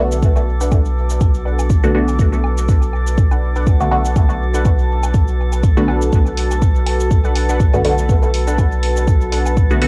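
A hazy, tape-worn sound with light reverb gives this short cut from a longer dub techno piece a home-recorded cassette feel, deep and hazy in mood, at 122 BPM in 4/4 with a lightly swung sixteenth-note feel in B minor, resting on a single Bm7 chord. Up front, an electronic kick drum sounds layered and produced, re-recorded in a small room, and a soft, round sub bass sits on a low B with tube saturation and sidechain pumping. Muted, detuned sawtooth chord stabs with fast attack and short decay carry chorus, phaser and dub echo, while a moody, dark pad with slow attack and long release enters at 0.2 seconds, breathing with sidechain pumping under its own reverb. A glassy texture of drifting overtones hovers calmly on a single A, and a warbling, lo-fi, mellow pluck riff enters at 0.6 seconds in the background, its filter sweep trailing into dub echo. Rounding out the groove are an analog-sounding electronic shaker and hi-hat, plus very quiet, dry electronic woodblock and toms.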